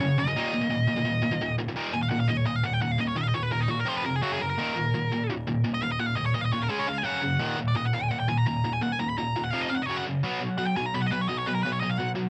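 A relentless, heavy metal excerpt in Eb minor at 170 BPM in a straight 4/4 opens with a tight, bright, double-tracked distorted guitar riff and a nasal, overdriven lead guitar with a parked wah, both up front and colored by cassette tape, with analog delay on the lead as it breaks into a picked solo at 1.8 seconds over the riff in a booth with moderate ambience.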